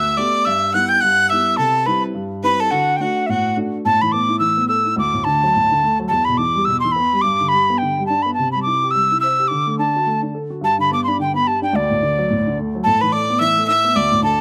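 An airy, mellow metal mid whistle with vibrato and a soft attack carries the melody of this bright, rollicking Celtic folk tune in D mixolydian at 213 BPM with a swung 4/4 feel. It rides over a dark, smooth baby grand piano with long sustain, while a rich, biting fiddle adds a close, earthy second line at the start, drops out at 3.6 seconds and returns at 12.8 seconds, each part carrying a slapback echo in a dry outdoor sound.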